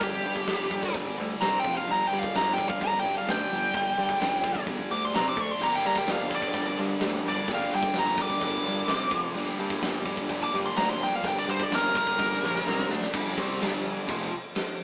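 This recording has the sound of a band playing live in one stone room with a moderate reverb, heard through a small speaker. It is a heavy, menacing hard rock passage in G minor at 128 BPM in a straight 4/4, cut from a longer piece. Up front, a nasal lead guitar with a parked wah and overdrive plays a solo melody. Behind it, a warm overdriven semi-hollow guitar and a tight, bright distorted guitar play riffs over a growly picked electric bass. A huge arena drum kit, with a fat snare, punchy kick, crash and hi-hat, and bright cymbals, drives the band. At 5.6 seconds, a dark, compressed, double-tracked overdriven guitar with spring reverb joins the riffs, and a drum fill from 12.2 seconds leads into a short closing section on G5 at 13.1 seconds.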